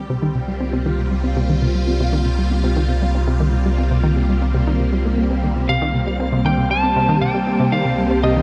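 Mysterious and cosmic, this short cut from a longer piece of ambient, sequencer-driven space music moves at 118 BPM in 4/4 over a Cm7 chord. A swirling, vintage string machine with ensemble chorus and phaser holds bright, up-front sustained chords, while a detuned sawtooth analog pluck with chorus and delay repeats a riff under a filter sweep and a deep, evolving, ring-modulated bass grounds the low end. At 5.7 seconds a slightly broken-up, compressed electric lead guitar enters up front with a delayed melody, all bathed in a moderate shimmer reverb with an 8.7-second tail.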